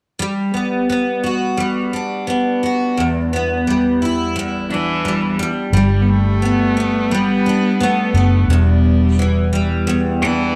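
A bright, full-bodied, double-tracked steel-string acoustic guitar opens this carefree, heartfelt pop fragment at 0.2 seconds with picked Gmaj7 and Em7 chords, a rich bowed cello with intense vibrato and a smooth top carries the melody from 4.7 seconds, and a dark, round, foam-muted vintage electric bass joins at 5.7 seconds as the harmony settles on G and Em7, the whole sitting in light small-room reverb.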